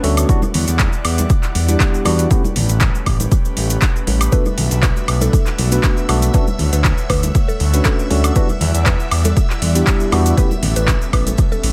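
Awash in echo-heavy digital ambience, this hypnotic, deep house excerpt moves with a gently swung sixteenth-note feel, cut from a longer piece. A punchy, overdriven electronic kick sits up front alongside a smooth, gliding sawtooth-and-triangle synth bass with vibrato and portamento, its sustained notes pumping against the kick. The layered drum kit adds handclaps, metallic hi-hats and woodblock, overdriven and re-recorded in a large room, while very quiet ringing congas and a grainy cabasa fill in the percussion. A clean tine electric piano plays stabs through analog delay until 10.5 s, over an airy, breathy pad holding sustained chords through Em9, A9, Bm7 and Dmaj7 in the background. At 4.3 s a woody, round FM pluck enters with a mallet-like melody treated with chorus, phaser and delay, joined by shimmering vintage string-machine violins high above.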